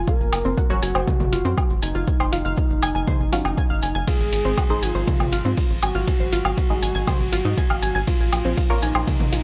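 A straight 4/4 pulse at 120 BPM drives this cinematic, dramatic melodic techno, built on a punchy analog kick and a tape-warm deep house kit of hi-hat, ride cymbal, toms and woodblock, both re-recorded in a small room, with a grainy, close cabasa sitting in the background. A tight, sawtooth sequencer bass pumps beneath a round, sustained octave-layered lead with chorus, vibrato and tape echo, while a warbling, nasal, lo-fi pluck spins arpeggios and a muted, phased dub chord stab with a cassette-tape colour enters at 0.7 s, as the harmony moves from Gb to Ab and reaches Bbm at 8.1 s. A digital ambience and a dry, gritty hardware sound frame the synths, all of which pump with the sidechain.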